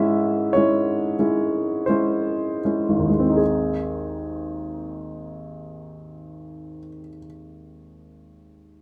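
In a flexible, rubato triple metre that slows through its first 3.4 seconds, this brief fragment of a romantic classical nocturne for solo grand piano feels tender and dreamy. The piano sounds clear, intimate and up front, with audible action noise, reaching from deep bass up into the treble as a minor-coloured opening chord settles onto the home major chord at 3.4 seconds. A moderate stone-room reverb lends the natural tone a gentle halo.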